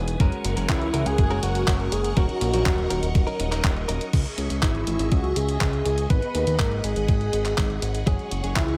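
A straight 4/4 pulse at 122 BPM drives this bittersweet, nostalgic italo disco excerpt, with a thumpy, tape-warm electronic kick sitting loudest in the mix and a sampler-style 12-bit drum machine adding crash, handclaps and hi-hat, both re-recorded in a large room. A fat, detuned sawtooth bass sits up front beneath a swirling vintage string machine holding chords through ensemble chorus and phaser, while a bright, compressed clean electric guitar adds picked stabs until 4.1 seconds and returns briefly at 8.1 seconds. From 0.7 seconds a bold, dark unison lead with vibrato and tape echo carries the melody over chords moving from F#add9 and D#m7 to C#madd9, G#m7 and F#sus2, all kept fairly dry.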